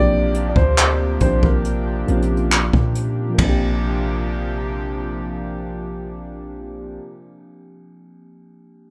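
Contemporary R&B at a slow 69 BPM in Bb major, this short, romantic and dreamy excerpt opens on a Bb69 chord with a rough home-demo feel and a small-room reverb. A dark, mellow concert grand piano carries the melody with tape echo but is heard only until 2.5 seconds. Beneath it, a round, warbling FM electric piano with chorus plays the accompaniment through to 8.9 seconds, while a shimmering, retro pulse-width pad holds sustained chords with a slow attack and long release. A deep, boomy 808-style bass sits up front in the low register, decaying after each fast attack. A jazz brush kit with dark cymbals, handclaps, hi-hat, kick and ride comes in at 0.3 seconds and plays only until 3.6 seconds, giving the opening an acoustic, natural studio-room character.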